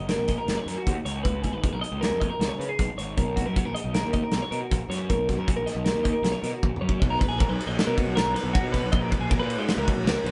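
Math rock with a midwest emo heart, this bright, wistful excerpt moves at 156 BPM in an odd 5/4 metre with a straight feel, centred on B major. A twangy, clean twelve-string electric guitar plays compressed, picked arpeggios spanning F#4 to D#5, bathed in spring reverb. Beneath it, a fuzzy picked electric bass sits up front, overdriven and warm. A loose indie drum kit, entering at 0.1 seconds, pushes hi-hat, kick, snare, toms and ride cymbal through a pumping small room, with dark cymbals, a medium-tuned snare and a tight kick placed close to the listener. The harmony drifts through colourful chords like C#7sus2 and Bmaj9, and a drum fill from 6.6 seconds ushers in a new section at 7.0 seconds built on Bmaj7 and D#m7/A#. The band sounds like it is playing live together in one modest room, with a rounded top end that lends the recording an intimate, slightly muted character.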